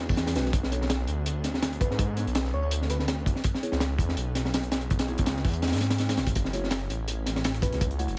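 An excerpt of dark, nostalgic drum and bass in F# minor at 165 BPM opens on a thick, menacing detuned saw bass, joined at once by a crunchy, saturated breakbeat kit with a tight kick and high-tuned snare and a very quiet granular cloud pad, while a mellow tine electric piano adds phased, dub-echoed stabs over chords moving from G#m7b5 through Bm9 and C#m7 to F#m7, a round, gentle FM lead briefly sings a chorused melody at 1.8 seconds, and a compressed, high-passed sampler-style breakbeat with tambourine slips into the background at 6.4 seconds.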